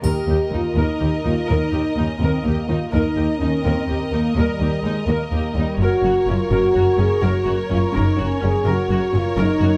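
A short cut from a longer cinematic orchestral score opens at 0.0 seconds with the full ensemble and a brief, bright touch of triangle that ends by 1.0 second. The mood is majestic and heroic, moving at 84 beats per minute in a straight 12/8. A clear, intense violin section carries the melody high in its range, set back in the hall, while a second violin section enters a moment later and holds a smooth, even line just beneath it. Lush violas with vibrato fill the middle. A mellow French horn section, the most prominent voice, sustains chords across the texture. Cellos and double basses anchor the bottom from the distance, the cellos sitting in the background. The harmony rests on Eb before shifting to Gb at 5.8 seconds, and the close, detailed recording carries a light reverb.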